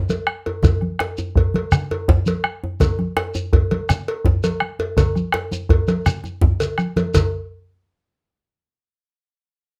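A deep, dark bombo sits dry and up front beside a medium-tuned djembe in this driving, festive West African drum ensemble excerpt at 111 BPM in 12/8, together with thick-skinned, damped congas played with soft hands, a metallic cowbell and a grainy, mellow shekere, with a drum fill at 6.6 seconds before the parts stop at 7.3 seconds, heard through close, detailed microphones in a moderate studio reverb.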